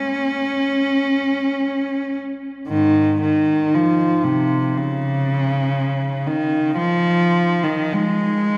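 A cathedral-sized reverb with a long, lingering tail of 5.4 seconds surrounds this short excerpt, and the room itself is heard from further back. Within that space a single bowed cello plays alone from 0.0 to 8.6 seconds, its tone rich and smooth, placed close and up front with vibrato and an even sound. This is a free, expressive classical piece for unaccompanied cello in Db major, tuned to A4 = 437 Hz, moving in 4/4 at a slow, elastic 48 to 61 BPM with a rubato feel. The line sits between Ab2 and Db4, keeping to the instrument's lower and middle register. The mood is serene and nostalgic, a brief passage cut from a longer work.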